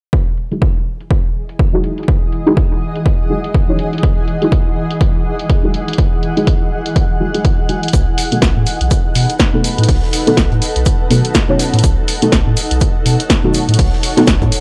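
A swung 123 BPM deep house groove in E major opens with a dry, punchy analog kick up front and a drum machine's low-pass-filtered hats and snare, as detuned chord stabs with chorus, phaser and analog delay pump against a bright, blurred granular pad, before a deep, saturated sub bass and a very quiet, damped 70s acoustic kit with hi-hat, shaker and fat snare join at 7.9 s, where the harmony moves from Emaj9 to B7 in this sunny, gritty hardware-recorded excerpt.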